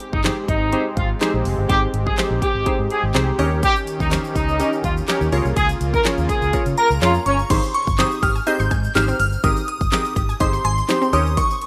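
A shimmering FM bell with a dreamy halo of ensemble chorus rings up front from 6.8 seconds, carrying the melody high above this summery, carefree dance-pop excerpt in Ab major at 124 BPM in a straight 4/4. Before it, a clear horn section with light vibrato sings the opening melody from a distant, roomy space, with delay and sidechain pumping. A soft supersaw holds smooth, evolving sustained chords over the first 7.5 seconds, while a glassy, crystalline wavetable pluck adds warbling chorused accompaniment throughout. A dark, foam-muted fingered electric bass gives a round, amped low end, and a punchy pop drum kit with a fat snare, handclaps, hi-hat and crash drives the groove, joined by a grainy tube shaker tucked in the background. At 7.5 seconds a lush, wave-folded unison pluck enters with delayed arpeggios as the harmony moves from Abmaj7 through Eb7 and Db6 and back, all in a rough home demo mix with light reverb.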